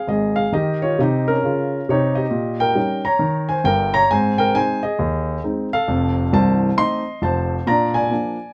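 A swinging 4/4 lilt drives this exuberant stride jazz fragment, cut from a longer piece, where a dark, mellow solo grand piano with short sustain sits up front in a moderate club reverb and moves through an Ab major progression rich in dominant-seventh chords across 8.5 seconds.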